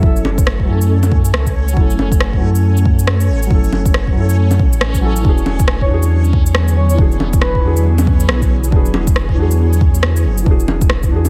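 A deep, round sub bass with tube saturation anchors this nocturnal, ghostly future garage excerpt at 138 BPM in F# minor, pumping under a tape-warm electronic kick and a swung pattern of electronic shaker, bongos and rim click that enters at 0.2 s, both re-recorded in a large room. A felt-muted upright piano with tape echo and an ethereal, detuned pad with ensemble chorus and 12-bit sampler grit breathe with the same sidechain pulse over F#m7 moving to E9, while a reversed, granular swelling texture shimmers faintly above. A breathy, flute-like synth lead with vibrato and cassette tape colour drifts in the background from 5.8 to 7.8 s, all set in light digital ambience.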